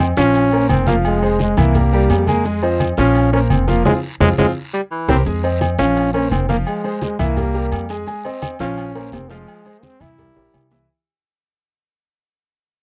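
A dry, close 1970s-style studio sound with light reverb frames this fiery, danceable salsa cut in F minor at 171 BPM, where a bright, punchy trombone with light vibrato carries the melody up front over a woody, thumpy pizzicato upright bass and a clear, polished baby grand piano, while a warm baritone saxophone plays a second line until 5.2 seconds, low-tuned congas, ringing agogo bells and timbales, raspy guiro and grainy maracas fill out the percussion, and a drum fill with a band accent at 3.9 seconds leads into a fade-out from 5.3 seconds.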